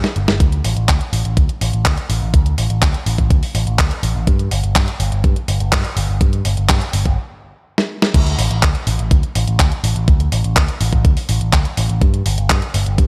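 A straight 4/4 pulse at 124 BPM drives this melodramatic, bittersweet italo disco excerpt: a clean 12-bit digital drum machine opens with a fill of fat, sampler-style snare, handclaps, hi-hat and crash cymbal in studio reverb, a picked electric bass with an envelope filter enters almost at once with an amped, up-front tone between G1 and G2, a thumpy, tape-warm electronic kick joins at 0.4 s, and after a stop at 7.2 s and a second drum fill the music moves into a new section at 8.1 s.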